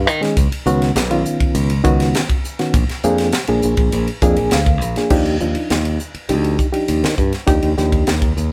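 The recording captures a small band playing live together in one studio room, with moderate reverb lending a touch of air. This slick, bright piece of electric jazz fusion moves at 101 BPM in a straight 4/4. A reed electric piano carries the accompaniment with a reedy, clean tone and fast tremolo, adding fills at the outset and again from 3.9 seconds. Underneath, a modern fingered electric bass sits up front with a growly, direct edge. The acoustic fusion kit sounds crisp and polished, with a high-tuned snare, punchy kick, hi-hat, and dark crash and ride cymbals. Harmonies pass from Db9sus4 to Bb7 before settling on Ebmaj9 at 5.1 seconds, where the music lands in Eb major.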